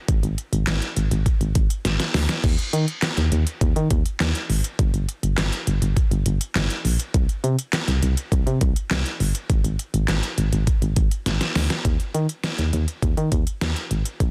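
The recording is dry and close, with a dense, heavily limited modern master that keeps both parts up front. This nostalgic, wistful synth-pop excerpt moves at 102 BPM in a straight 4/4, tuned slightly above standard pitch to A4 = 441 Hz. A punchy, round FM bass with a fast attack and dark decay runs from G1 to Eb3 across the whole clip. Alongside it plays a layered electronic pop kit of knocking kick, deep snare, crisp hi-hats, handclaps and crash cymbal, given a tape-warm character and the feel of a small room. Drum fills arrive at 1.8 s and 11.3 s, the second leading into a new section at 11.8 s that carries on until the cut.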